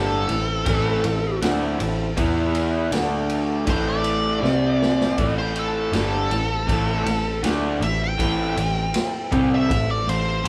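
Gritty and smoky, this blues rock and southern rock power-trio excerpt moves at a straight 80 BPM in 4/4, set in A minor. A raw, double-tracked garage guitar sits up front with an overdriven, lo-fi riff over a foam-muted, round electric bass, while a dark lead guitar, distorted and run through wah, carries the melody in the upper register. Beneath them, a very quiet tonewheel organ holds sustained chords with key click, third harmonic percussion, chorus vibrato and a slow rotary speaker. The drum kit enters at 0.3 seconds, sounding distant and saturated with a punchy kick, medium-tuned snare, ride cymbal and dark, rolled-off cymbals, and it plays a fill from 4.4 to 5.2 seconds. The harmony moves from Am to E5 and D5, returns to Am, then passes through C5 before settling back on Am, and the band plays live together in one large studio room with a moderate reverb.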